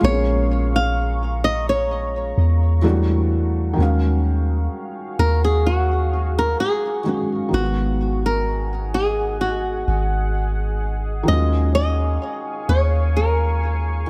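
From the first moment, a soft 808-style bass, a felt-muted upright piano, a deep ambient pad and a fingerpicked flamenco guitar sound together in this moody, longing R&B piece, cut from a longer work. It moves at a slow 64 BPM in 4/4 with a light swing on the sixteenths, set in Eb minor. The acoustic guitar carries the melody up front, its tone touched by a digital delay. Beneath it, the piano plays a mellow, intimate accompaniment with audible action noise, while the round, sine-like bass sits dark and forward. The detuned, warbling pad quietly holds sustained chords, treated with chorus and its own reverb, all within a small, lightly reverberant room. The harmony begins on Bbm7, shifts to Em11, then settles at 3.8 seconds into a passage moving between Ebm11 and Abm7 before returning to Ebm11.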